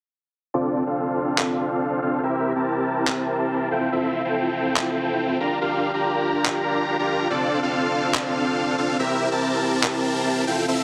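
Future bass at 142 BPM in a half-time, lightly swung feel, playful and bright, built on a thick, detuned supersaw riff from C4 to Bb5 that carries a low-pass filter sweep and tape echo over Dm7, C7, Fmaj7 and Bb6 chords, with layered electronic handclaps up front from 1.4 s to 9.9 s, all set in a moderate digital room and pressed into a heavily compressed, radio-ready sound.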